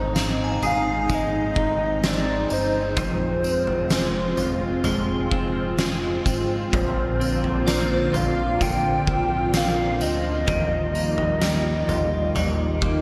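A straight, unhurried 4/4 beat from an oversized, low-tuned drum kit with a boomy kick, fat snare, tambourine and toms in gated reverb anchors this ethereal, blissful dream pop clip, as a glossy pulse-wave synth bass, a swirling phased analog pad, twangy chorused clean electric guitar arpeggios, a warbly square-and-sawtooth lead melody with vibrato, and a faint FM bell with a shimmering halo drift through a lush hall and bright 1980s-style digital sheen over a progression from Ab to Fm to Bbadd9 to Ebadd9.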